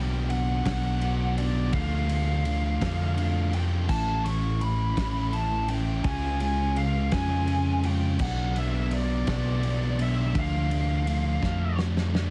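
Quiet-loud alternative rock in a slow 6/8 at 56 BPM, this anthemic, restless excerpt cycles through Bm, Dm, A and C# as a dark, bluesy overdriven lead guitar sings its melody over a sludgy distorted riff guitar and a thick fuzz guitar tucked in the background. An up-front, amped and overdriven fingered bass carries the low end, while a loose indie drum kit in a small room, with a fat snare and tight kick, enters at 0.3 seconds and closes with a fill from 11.4 seconds. The sound is dense and heavily limited with light reverb, dusted with vinyl crackle and a faint mains hum.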